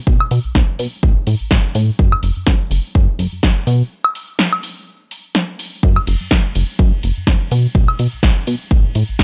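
A dry, gritty hardware recording with little reverb frames this funky, sensual fragment of filtered disco house, swung on the 16ths and cut from a longer piece. Up front, a layered, tape-warm electronic kick drives alongside an analog drum machine carrying hi-hat, ride cymbal, punchy snare and woodblock, its hats, cymbals and percussion pumping against the sidechain. A dark, plucky analog bass with a fast attack and ring-modulated sawtooth, square and triangle tones pumps and evolves beneath them, and a break arrives at 3.9 seconds before the groove returns at 5.8.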